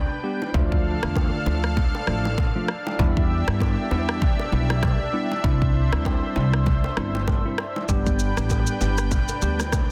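Dense and heavily limited, this modern master sits in a digital ambience, carrying a short excerpt of joyful, romantic afrobeats at 98 BPM in 4/4 with a 58% swing on the sixteenths, in G mixolydian tuned to A4 = 442 Hz. A lush, airy unison pad with a chorus effect holds sustained chords from the first moment, its detuned sawtooth and square layers, soft attack and noise layer giving a thick, bright glow. Underneath, a pizzicato upright bass with gut strings sounds woody and thumpy. A worn, slightly out-of-tune tine electric piano, mellow and lightly overdriven through its built-in speakers, adds accompaniment from 0.2 s. An electronic afro-pop drum kit sits up front from 0.5 s with a deep kick, rim click and shaker, its snare softly clipped, while distant bongos and congas, played with hard hands in a large room, stay in the background. The passage sits in a break until 7.9 s, moving from G through Dm, Em7 and Cadd9 before returning to G.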